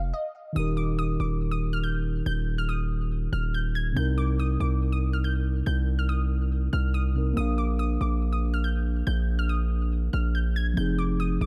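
A half-time trap groove at 141 BPM in 4/4 opens this hip hop excerpt in Eb major, briefly halting between 0.1 and 0.6 seconds before settling in. A distorted, saturated 808-style bass sits up front and heavy, its fast attack and decaying tail carrying a gritty noise layer beneath the whole passage. Above it, a glassy wavetable pluck carries the melody high in the register, crystalline and digital with a chorus sheen and a filter sweep, sitting lower in the mix than the bass. From 0.5 seconds a mellow, clean tine electric piano fills in the accompaniment, moving through Eb, Cm7, Bb and Fm7. The production is dark and dry, with little reverb, giving the piece a mood that feels both triumphant and wistful.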